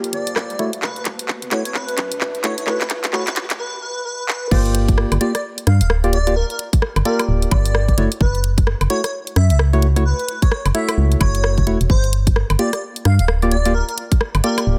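A skippy, late-night two-step garage excerpt at 130 BPM opens on a build-up of hollow, chorused organ stabs under a filter sweep, a dark FM bass, tape-warm garage drums with handclaps, rim clicks and woodblock, a very quiet riser and a warbling lo-fi pad pumping in the background, while an airy, detuned lead with vibrato floats above over Gm7 and F#m7 until a short break gives way at 4.5 seconds to the drop, where a tight, up-front electronic kick joins the swung groove.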